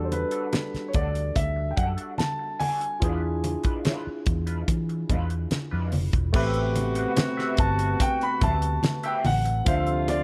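An up-front concert grand piano with a deep low end carries the melody, touched by a slapback echo, in this smooth, silky excerpt of lush 1970s-style soul at 72 BPM in A dorian, moving from a rootless Em11 through E7b9 to Am9 and Dm9. A barky, lightly overdriven tine electric piano fills in chords while a dark, round, foam-muted fingered bass and a dry, tight drum kit with a fat snare sit prominently beneath. A twangy, slightly broken-up guitar plays a wah riff, thick-skinned low-tuned congas stay in the background, and a distant, roomy horn section with light vibrato adds stabs from 6.3 seconds, all set in studio reverb.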